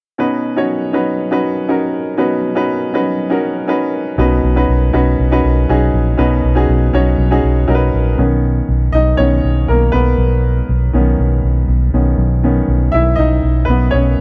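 Hopeful and anthemic, this piano-driven pop excerpt moves at 120 BPM in a straight 4/4 in B major, opening on a Badd9 chord as a bright, woody upright piano with short sustain lays down the accompaniment from 0.2 seconds. A dark, round, foam-muted vintage electric bass, fingered and punchy, joins at 4.2 seconds, sitting up front and slightly louder than the piano. The upright piano then steps forward with a solo from 8.2 seconds, all captured in a dry, close 1970s-style studio sound.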